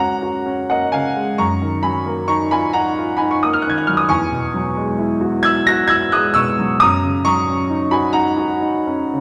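A clear concert grand piano plays alone through this 9.2-second excerpt, cut from a longer impressionist classical piece in F# major. The mood is dreamy and serene, moving at a slow 44 beats per minute in 6/8 with a loose, rubato feel. The piano spans a broad range from E2 up to A#6, its tone open and up front with a deep bass. The harmony drifts through colorful chords, from F#add9 to F#maj13 at 1.4 seconds, then E69 at 4.1 seconds before settling on F#6 at 6.8 seconds. A wet recital hall reverb with a 1.4-second decay surrounds the instrument, giving the sound the airy resonance of a church or concert hall.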